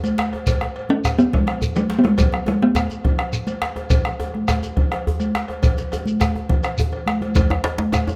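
Close, detailed microphones and light reverb frame this earthy, driving West African drum ensemble in 12/8 at 139 BPM, a short cut from a longer piece. A deep, dark, saturated bombo sits up front beneath congas, distant metallic cowbell, grainy shekere, and a tight, cracking djembe with metal rattles, while a talking drum with a short ring carries the melody between F#3 and C#4 from 0.9 to 3.4 seconds. After a drum fill at 6.9 seconds, a second, medium-tuned djembe struck with hard hands comes forward at 7.4 seconds.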